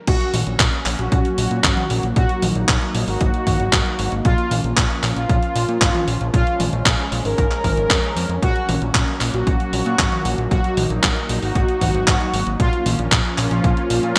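A bright, 1980s-style digital production bathed in a lush hall reverb opens this nostalgic, danceable italo disco excerpt. A bold, brassy analog synth lead with warbling vibrato, chorus and digital delay carries the melody over a slow-attack unison pad that adds airy texture with phaser shimmer and vintage 12-bit sampler grit. Underneath, a fat, saturated analog bass with a plucky filter locks in with a punchy, tape-tinged electronic kick and an up-front gated drum machine of handclaps, hi-hat, toms and crash cymbal, all cycling through Gb/Bb, Ebm and Bbm chords.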